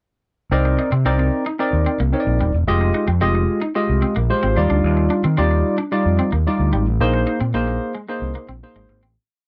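Late-night and funky, this short, complete funk piece moves at 111 BPM in a straight 4/4 feel, cycling through Cm9, Fm9, Ebmaj9 and Bb9sus4 before fading out from 7.0 seconds. An overdriven fingered electric bass sits up front with a fat, syncopated boogie line, bright and amped, leaning on chromatic approach notes. A barky tine electric piano, clean through a combo amp and dressed in lush chorus, punches out syncopated drop2 chord stabs decorated with grace notes. Lower in the mix, an electric guitar at the edge of break-up picks a twangy, muted single-note riff, its warm tone slightly broken-up and colored by analog chorus. The sound is a dry, close 1970s-style studio recording with little reverb, keeping the groove tight and intimate.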